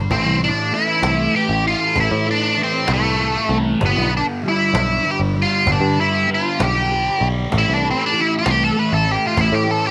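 Psychedelic rock in a mysterious, dark 6/8 mood, cut from a longer piece, where a double-tracked fuzz guitar with phaser plays a low riff over a round, foam-muted picked electric bass and a woody cajon with faint snares in a small room, while an up-front octave-fuzz lead guitar carries the melody through wah and tape echo as the chords move from Am to G at 3.8 seconds and back to Am at 7.5 seconds under light reverb.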